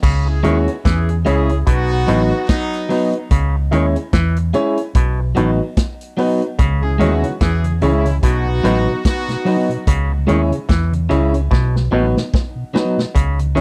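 Roots reggae at a meditative, hypnotic 73 BPM in C# minor, this short excerpt rocks between C#m and B as a punchy, foam-muted bass and an up-front vintage kit anchor a stringy, overdriven clav riff with auto-wah, a slightly broken-up guitar and a smooth horn second line both carrying tape echo, and dark grand piano stabs with audible action noise, while a soft, flute-like tonewheel organ on slow rotary slips in at 6.8 seconds and a drum fill starts at 11.5 seconds, all captured in a dry, close 1970s-style studio sound.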